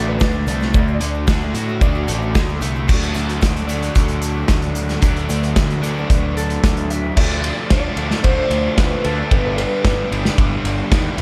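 Wistful and jangly, this indie rock excerpt rides on a dark, double-tracked overdriven guitar riff with slapback echo, a punchy fuzz bass and an up-front loose drum kit with a pumping small-room sound, while a lo-fi, slightly broken-up guitar through a small old amp plays a brief melody at the start and returns at 6.4 s, a vintage sawtooth string machine of violas holds very quiet sustained chords, and a grainy egg shaker sits faintly in the mix until 7.0 s, all set in light reverb as the harmony shifts from D to Dm at 7.2 s.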